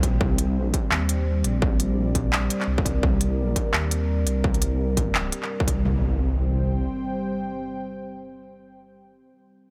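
A heavy, spacious half-time drum and bass excerpt opens with a moody, chorused analog pad pumping under sidechain, a rumbling detuned saw bass moving through a filter sweep, a distorted, overdriven kick and an industrial kit of handclaps and crisp hi-hats, until the drums stop at 5.8 seconds and an electronic impact lands at 5.9 seconds while the pad sustains to 9.1 seconds in light reverb.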